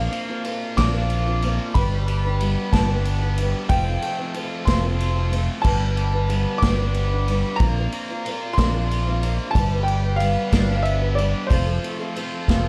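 In a straight 6/8 feel, this nostalgic, jangly folk rock and heartland rock excerpt cycles through Bbadd9, G and F, with a worn, long-sustaining baby grand piano carrying the melody over a shimmering, octave-doubled picked twelve-string acoustic guitar with audible finger squeak, a bright, overdriven, double-tracked electric guitar riff, a round, punchy fingered bass sitting up front, a very quiet, reedy, breathing harmonium holding sustained chords, and a distant, roomy acoustic drum kit played with bundle sticks, its dark cymbals, medium-tuned snare and kick all wrapped in a dark production with light reverb and small-room ambience.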